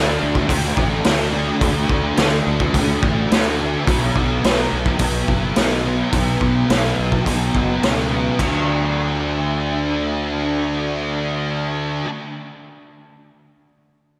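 Shoegaze-tinged dream pop rock at 106 BPM in D major, this hazy, blissful excerpt pairs a thick, dark, double-tracked fuzz guitar riff with distortion and ensemble chorus against a round, overdriven fuzz bass, while a gritty, saturated garage drum kit with a boomy kick and crash cymbal plays up front from 0.4 to 8.5 seconds, all soaked in a lush hall reverb that makes the mix dreamy.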